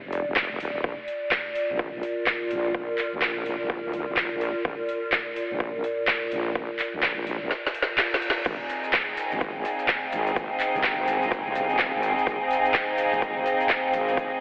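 A dreamy, reverb-soaked mix with a thin telephone-like tone frames this gritty, aggressive bass house excerpt at 126 BPM with a swung 16th-note feel, built on a heavy, saturated sawtooth wobble bass and a nostalgic, detuned lo-fi pad that both pump against the sidechain. An overdriven garage kit with a woody snare, metallic hats, handclaps and crash sits up front over a punchy, layered electronic kick. After a drum fill and a very quiet reverse cymbal at 7.7 seconds, an intimate chamber string section bowing soft sul tasto chords enters at 8.5 seconds alongside grainy maracas in the background.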